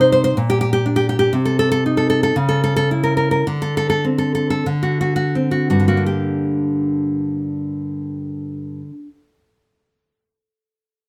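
A fingerpicked nylon-string guitar sits up front, playing alone from G2 to C5 with a warm, classical tone and an audible finger squeak. This is an intimate, wistful romantic piece in G minor, in 2/4 with a rubato feel that moves between 41 and 64 BPM, tuned to A4 = 439 Hz. From 0.4 seconds the pace slows as the harmony passes through Bb6, Cm6, C#m6 and Amadd11/D, settling on G minor as a new section begins at 6.1 seconds. The guitar stops at 9.2 seconds in what is a short cut from a longer piece. Close, detailed microphones capture the instrument, surrounded by a moderate studio reverb.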